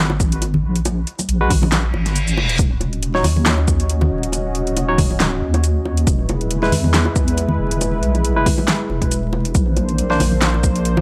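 Deep dubstep with a meditative, dark half-time swing, built on an up-front wobbling sine-and-triangle bass with chorus, a punchy overdriven electronic kick, an overdriven deep house kit of fat snare, metallic hats, handclaps and shaker, dry acoustic bongos and congas in the background, barky tine electric piano stabs through a combo amp with dub echo from 1.4 seconds, a brief reverse cymbal at 1.9 seconds, and a detuned sawtooth analog pad with chorus and 12-bit sampler grit entering at 2.6 seconds over Ebm7, E and Bbadd9, all in a nearly reverb-free sound with vinyl crackle.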